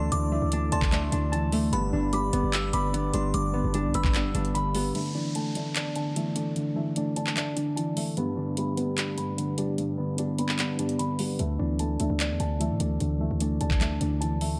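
A felt-muted upright piano sits up front throughout this dark, menacing trap excerpt, its soft, mellow, intimate tone softened further by a low-pass filter, with audible action noise lending it a vintage feel. The track moves at 149 BPM in 4/4 with a half-time feel, shifting between Dsus2 and G. A thumb-plucked concert harp rings through arpeggios alongside it, also filtered and touched with tape echo, while in the opening seconds a crystalline FM synth bell adds a glassy, chorused second line and a warm French horn section holds sustained chords with light vibrato in the background. Electronic trap drums with a knocking kick, metallic hi-hats, handclaps and crash cymbal stay up front, and a punchy, heavy 808-style bass with a noise layer drives the first 4.9 seconds. At 5.0 seconds the bass drops out for a break carried by piano, harp and drums, marked by an electronic downlifter, before the 808 returns at 11.4 seconds. 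The production is dark with light reverb.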